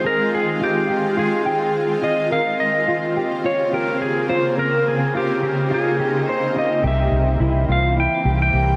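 An echo-heavy mix bathed in a moderate plate reverb gives this short dream pop passage, cut from a longer piece, a haunting and melancholic air. At 106 BPM in a straight 4/4, a clean lap steel guitar carries the melody up front, its warm tone trailed by tape echo. Beneath it, a shimmering ambient pad holds sustained chords with an ethereal, granular sheen, its octave-up shimmer, chorus and built-in reverb lending a bright glow, while a mellow electric guitar spins dark arpeggios through ensemble chorus and tape echo. The harmony moves from Abmaj7 to Bbmadd9 at 2.3 seconds, then to C7 at 6.8 seconds, where a vintage muted fingered electric bass enters with a round, punchy, foam-muted low C.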